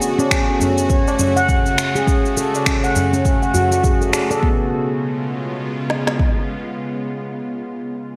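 A swung 4/4 groove at 102 BPM drives this short, mystical organic downtempo excerpt, built from an up-front electronic kit with a deep kick and woody snare, tape-toned cabasa and finger snaps, and a low-tuned, ringing tabla tucked in the background. Over an F#m chord that moves to C#7 at 4.4 s, a mellow stainless-steel handpan plays arpeggios with 12-bit sampler grit, digital delay and a filter sweep. Meanwhile a tense, detuned, string-like drone with ring modulation, vibrato and sidechain pumping sustains chords until 7.5 s, all within a bright, 1980s-style digital mix with moderate plate reverb and gated reverb on the drums.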